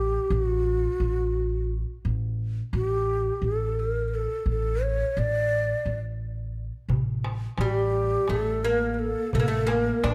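Light reverb gives this short cut from a longer Turkish makam ensemble piece a close, intimate sound, with the ney, oud and upright bass all set up front. The music moves in a straight 7/8 at 172 eighth-note beats per minute in A hicaz, tuned to A4 = 441 Hz, and its mood is stately and passionate. A breathy, hollow ney carries the melody from the very start, its end-blown reed-cane tone mellow and tongued with a gentle vibrato. Underneath, a pizzicato upright bass holds a low A, its steel strings sounding growly and thumpy. At 6.9 seconds a crisp, metal-shelled darbuka joins with a compressed, saturated edge. At 7.6 seconds a plectrum-plucked, fretless oud adds a woody second line, its double strings ringing beneath the ney.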